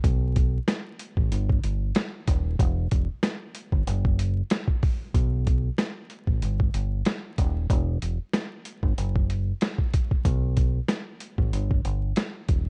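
Boom-bap hip-hop at 94 BPM with a lightly swung 16th-note feel, gritty and reflective in mood, cut from a longer piece. A sampler-style drum kit sits up front, compressed and pitched down, with a thumpy kick, a high-tuned snare and hi-hat, beside a deep, round fingered electric bass that sounds dark and amped, ranging from D#1 to B1. The whole recording is dry, dulled in its top end and coloured by worn cassette tape with warbly pitch drift and vinyl crackle, shifting into a new section at 5.1 seconds.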